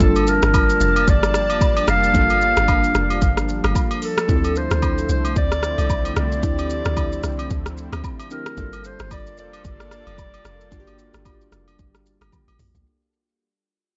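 Swung sixteenths drive this hypnotic, late-night amapiano fragment, with a deep house drum kit of deep kick, metallic hats, rim click, shaker and toms sitting up front over a round, dark log drum bass, while agogo bells and woodblock add a live-room percussive layer and a drum fill arrives at 12.3 seconds. A mellow, distant clarinet carries the melody in a classical style over glassy digital keys with chorus, analog delay and a filter sweep. A lush, detuned unison pad pumps in the background through Gm9 and Dm9, all within an echo-heavy mix with light reverb that is fading throughout.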